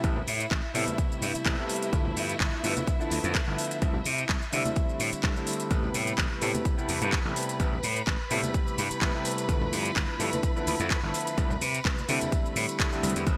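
Filtered disco house at 127 BPM in A minor with a nostalgic, groovy swing, where a bright, up-front grand piano under phaser and low-pass filter pumps over rich, vibrato-laden chamber strings, a growly overdriven slap bass, a punchy tape-warm kick, metallic house hats with claps and shaker in gated reverb, and very quiet congas and tambourine, all cycling through Am7, G13 and C6 in a lush hall with a bright 1980s-style digital sheen.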